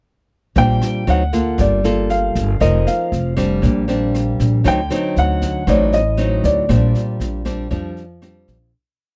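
A woody, thumpy upright bass sits up front, playing a dotted root-and-fifth pizzicato line beneath a fingerpicked nylon-string guitar that pairs thumb bass with syncopated plucked chords. This brief, sophisticated and sunny bossa nova piece in Bb major moves at 118 BPM. A dark grand piano adds a mellow, short-sustained motif-based melody, while a brushed drum kit with a boomy kick keeps a bossa brush groove in a dry, close 1970s-style studio sound that fades out from 6.7 to 8.7 seconds.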